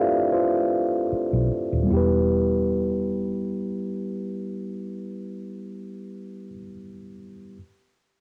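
A mellow tine electric piano sits up front in this late-night, introspective R&B excerpt, its clean, direct tone colored by a cassette tape effect. It opens alone, moving from a G9sus4 chord to E minor in E phrygian, at a relaxed 76 BPM in 4/4 with a light sixteenth-note swing. A vintage muted fingered electric bass enters low at 1.1 s with a dark, round, foam-muted, amped character, sitting slightly beneath the keys in level before stopping at 6.5 s. The piano carries on until 7.6 s. A moderate spring reverb and the tuning at A4 = 437 Hz give the home cassette recording a slightly detuned feel.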